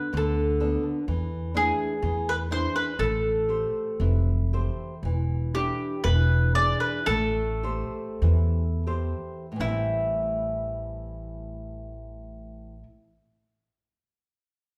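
Set in a large studio with a moderate, 1.3-second reverb and a live-in-one-room feel, this mournful, longing fado-style ballad in A minor drifts in rubato at 38-64 BPM, its mellow, double-stringed picked mandolin carrying the melody up front over bright, fresh-stringed fingerpicking from a small-sounding nylon-string guitar and a growly, woody pizzicato upright bass, with the pace slowing between 5.0 and 9.6 seconds as the chords settle from E7sus4 and E7 onto Am7 in this short cut from a longer piece.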